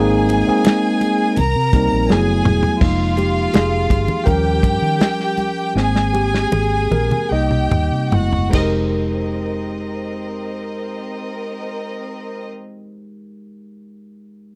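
Lush 1970s-style soul in F minor, this bittersweet, cinematic excerpt moves at 70-83 BPM in a straight 4/4 and gradually slows as a mellow, clean tine electric piano takes a solo from 2.8 to 9.0 seconds over chords such as Abadd9, Cm7, Gbm11 and Fm11. A smooth, vibrato-rich studio violin section carries a second line with slapback echo, a round, foam-muted fingered electric bass holds the low end, and a dark, dry soul drum kit with a tight kick and rolled-off top adds fills, with thick-skinned congas sitting in the background. The close, intimate studio sound keeps the piano and strings up front, and the electric piano rings on alone until 14.6 seconds.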